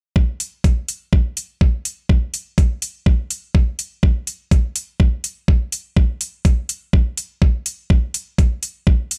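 Minimal techno at 124 BPM in a straight 4/4, this short cut from a longer piece has a cool, sparse mood built from drums alone. An electronic kick drum starts at 0.2 seconds with a knocking, layered tone that sits up front and carries most of the weight. An electronic hi-hat joins at 0.4 seconds, its metallic timbre placed well beneath the kick yet still close and present. Both parts have a tape-warm, produced character and a touch of studio reverb, while the overall space stays fairly dry. The bright digital sheen of the production recalls the 1980s and keeps the stripped-back pattern crisp through to 9.2 seconds.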